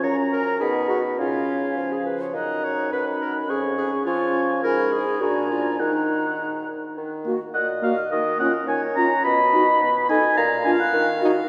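A mellow, up-front oboe carries the second line alongside a hollow, vibrato-tinged flute melody, while a clear, present clarinet and a French horn with light vibrato fill in the accompaniment above a vintage-toned bassoon bass, in this stormy, restless classical-period wind quintet movement at a quick 105 BPM in 2/4 that turns to Eb minor at 4.6 seconds, all bathed in wet cathedral reverb in a short cut from a longer piece.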